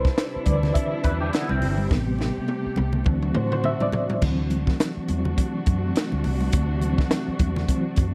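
Lush 1970s-style soul with a smooth, cinematic mood and a swung sixteenth-note feel, taken from a longer piece. A reedy electric piano with a fast tremolo, heard through its built-in speakers, carries a solo across the whole passage over Cmaj9, Am9 and D7 chords. A bowed string section holds soft-attack, vibrato-rich chords with a silky top beneath it. A foam-muted, round electric bass joins a compact cocktail kit with dark cymbals, a high-tuned snare and a punchy kick that sits up front, and the drums play a fill from 1.9 to 4.2 seconds. Bright, damped congas struck with hard hands stay in the background, while a twangy, slightly broken-up electric guitar through a small old amp, thickened by ensemble chorus, plays a brief riff from 1.0 seconds. The dry, close studio sound keeps the whole recording intimate.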